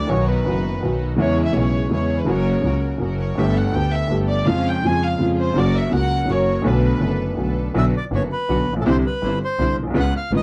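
A chamber violin section with a nasal, gut-string, period-style tone carries a solo second line through the opening of this passionate, tense tango excerpt in B minor. It moves at 165 BPM in a rubato 3/4 over a woody, slightly detuned upright piano up front, an intense bowed double bass with vibrato, and distant symphonic strings adding smooth stabs in the background. The violins stop at 7.4 seconds, and at 7.8 seconds a reedy, airy, bright bandoneon takes the melody up front, all within a dry, close 1970s-style studio sound with light reverb.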